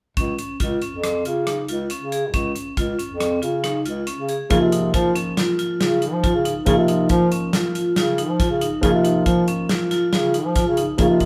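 Light reverb surrounds a band playing live in one room, giving this short cut from a longer progressive instrumental piece a bright, intricate character in an uneven 5/4 metre with a straight feel. From 0.2 seconds, a vibraphone struck with hard mallets spins out metallic, ringing arpeggios in a dark, smooth tone colored by a slow motor vibrato. Beneath it, a warm, vintage-sounding bass clarinet carries the bass line up front in a classical style. An acoustic studio drum kit, airy and polished, keeps time with hi-hat, a tight kick, rim clicks and a medium-tuned snare, also placed forward in the mix. At 4.5 seconds, as the harmony settles from Db onto Dbmaj7, a dark baby grand piano joins with a mellow, boxy accompaniment of short sustain, and all four parts carry on together until the cut ends at 11.3 seconds.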